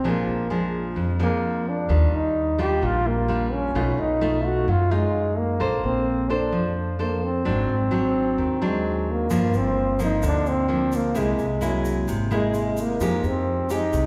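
Bossa nova at 130 BPM in 4/4, intimate and wistful, with a punchy, forceful jazz trombone carrying the melody up front with scooped notes, a full-bodied fingerpicked nylon-string guitar with audible finger squeak moving through chords from Bb7 to Fm9, a woody pizzicato upright bass underneath, and a grainy, bright tube shaker joining at 9.3 s, heard in a reverberant church or concert hall in this short excerpt cut from a longer piece.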